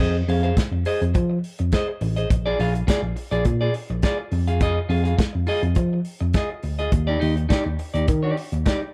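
Driving and glamorous, this disco excerpt moves at 104 BPM in a straight 4/4, sitting in F dorian. A tine electric piano carries the bass line in a low register; it sounds worn and slightly out of tune, lightly overdriven as if heard through its own built-in speakers. A soul drum kit joins at 0.3 seconds with hi-hat, a tight kick and a medium-tuned snare, its roomy, rolled-off tone giving the groove a warm weight. Above them, a bright, twangy clean electric guitar plays picked accompaniment with a touch of spring reverb. The harmony moves from Fm7 to Bb7, back to Fm7, and settles on Ebmaj7 near the end. The overall sound is close and dry, with all three parts placed up front.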